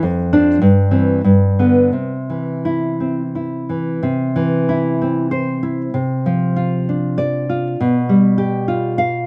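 A solo nylon-string guitar, warm and up front, plays a wistful, intimate romantic piece in C major and 3/4, moving with rubato between 83 and 102 BPM through chords like Dm/F, C/G, G and C before shifting to Dm7/C and G7/B after 4.0 seconds, all carried by light reverb in an open outdoor setting in this short excerpt cut from a longer work.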